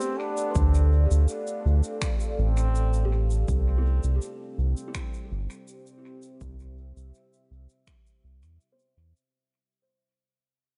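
This ambient dub excerpt opens on a clear, distant trombone playing a brief classical-style solo melody through analog delay, over a deep, moody pad of sustained, warbling chords thickened with chorus and its own reverb. A buzzing, woody kalimba sits in the background with soft, dark arpeggios under a low-pass filter and analog delay, while an airy shaker and finger snaps, treated with dub echo, add a polished acoustic pulse. At 0.6 seconds a round analog bass enters up front, mellow and evolving with a touch of ring modulation, joined by a punchy, layered electronic kick. The trombone stops at 3.4 seconds as the harmony moves from Dm7 to C, leaving the pad, kalimba and rhythm to carry the spacious mood at a steady 82 BPM in 4/4. The echo-heavy mix, set in a small room with its highs kept dull, fades out gradually through its first 9.3 seconds, with the kalimba lingering until 10.0 seconds.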